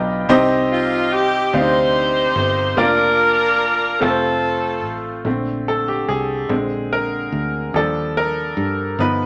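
Hopeful and jubilant, this slow gospel excerpt in 6/8 moves at 48 BPM in Bb major, with a bright baby grand piano opening on a fill and sustaining long, brilliant chords over a punchy, foam-muted fingered electric bass. An edgy saxophone section carries the melody up front from 0.7 to 5.2 seconds with light vibrato and a pop-style bite, over chords moving from Cm through Bb/F to F. The piano then takes a solo from 5.3 seconds through Bbmaj7, Bb7 and Ebmaj7, all set in a moderate large-studio reverb.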